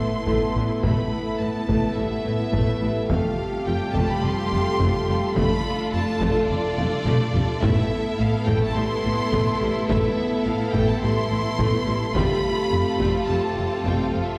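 Hard-stick taiko drums drive this relentless, futuristic stretch of hybrid orchestral and electronic film score, entering at 0.3 seconds just after a very quiet electronic impact and breaking into a fill around 6.8 seconds. Above them, lush bowed violins carry a high, vibrato-rich melody over a focused second line. A rich viola section accompanies in the background, while warm French horns and a hollow, flute-like chorused pad hold sustained harmony. Clear cellos and studio double basses anchor the low end, and the whole ensemble sounds from further back in a reverberant recital hall as the harmony cycles between A minor and F colours.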